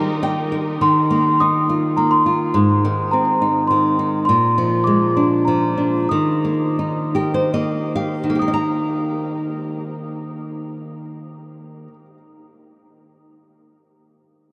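A nylon-string flamenco guitar fill, fingerpicked and up front with fresh strings, opens this tender, gentle lullaby alongside a bell-like, delicate celesta melody and lush, distant bowed strings that stop at 0.8 seconds, then the guitar carries the 3/4 accompaniment in Eb major at 66-104 BPM, slowing from 4.3 to 8.4 seconds, all set in a vast, echoing space with a huge ambient reverb in a brief section cut from a longer piece.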